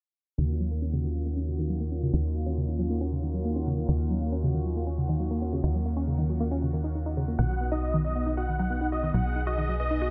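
Lightly reverberant and softened by a low-pass filter, this brief trance cut from a longer piece feels driving and euphoric in a straight 4/4 metre. From 0.4 seconds a tight, punchy sequencer bass sits up front with a nasal, evolving sawtooth-and-square tone. Over it, a lush unison pluck spins arpeggios through a delay, its detuned sawtooths carrying a noise layer and a filter sweep. A silky, string-like analog pad holds sustained chords, bright and wave-folded with ensemble chorus and vibrato. The harmony rests on Ebm7 until 7.4 seconds, when it moves to B and a huge supersaw lead enters up front with a compressed, detuned melody that is sent through tape echo and reinforced by a sub octave.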